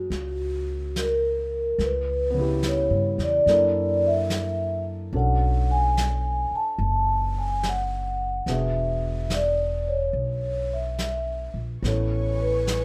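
Jazz ballad excerpt at a slow, swung 72 BPM with a tender, late-night mood, where up-front vibraphone played with soft mallets carries the melody in a ringing, band-limited tone with slow motor vibrato, over dark, mellow grand piano accompaniment, woody pizzicato upright bass and a vintage brush kit with a rolled-off top in a small, pumping room, while a lush bowed string section enters in the background at 11.8 s on the closing Amaj9, all in a dry space with little reverb.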